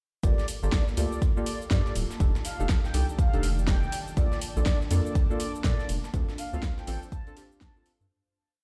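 The round analog bass stands out most, a dark, up-front syncopated riff whose fast attack sits deep under a four-on-the-floor electronic kick, the bass pulsing with sidechain pumping through this short, late-night deep house piece in G minor at 122 BPM with a swung 16th-note feel. Above them, deep mellow chord stabs play dotted-rhythm chords in close voicing, their soft, warbling vintage tone colored by chorus and dub echo as the harmony moves from Gm9 to F13, Bbmaj7 and Dm7. A horn-like synth lead with a soft attack and vibrato repeats a smooth riff melody, also treated with chorus and dub echo, while an ethereal airy pad enters at 0.9 s with slowly shifting chords in the background. The deep house drum kit supplies a fat snare backbeat, metallic open hats and cabasa, and a gritty, high-tuned breakbeat sampler kit loops with edits far behind it, its hats and snare high-pass filtered. The whole piece plays as a drop in a large studio reverb, like a big sound system in a bare room, and fades out from 5.5 s to its end at 8.1 s.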